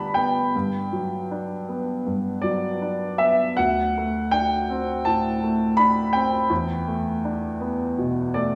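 Dreamy and luminous, this short excerpt from a longer impressionist piece for solo piano drifts along at 81 BPM in 4/4, its rubato feel letting the pulse breathe freely in G major. A baby grand carries everything alone from 0.0 to 8.6 seconds, its open, up-front tone and long sustain spanning from D2 up to B5. The harmony glides from Gmaj7 to D7 at 3.6 seconds, then settles onto Em7 at 6.5 seconds, lending the phrase a soft, suspended glow. A wet recital-hall reverb with a 1.6-second decay surrounds the instrument, and the church or concert-hall setting adds a gentle, spacious halo. The tuning sits slightly high at A4 = 441 Hz.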